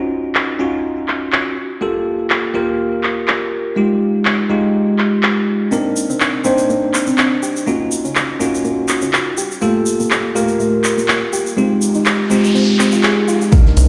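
Hypnotic and late-night, this deep house excerpt opens on bell-like tine electric piano stabs with subtle chorus, sidechain pumping and tape echo over a filtered drum kit of handclaps and muffled hi-hats, adds a soft, round pluck arpeggio and a grainy egg shaker at 5.7 seconds, brings in an electronic noise sweep at 11.9 seconds, and arrives at 13.5 seconds on a deep, up-front electronic kick and a faint brushed jazz kit, with a rubbery, hollow square bass following at 13.8 seconds, all through minor ninth chords and a stone-room echo chamber reverb.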